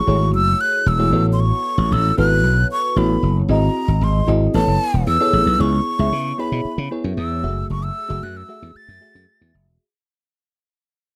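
A dry, close studio sound frames this breezy, upbeat slice of polished 1980s jazz-funk pop, where a breathy, hollow jazz flute with vibrato carries the melody up front over sparkling, bell-like FM electric piano chords touched with subtle chorus and a punchy, growly slap bass, drifting through lush harmonies like F#m9 and Amaj9 before fading out from 5.6 seconds.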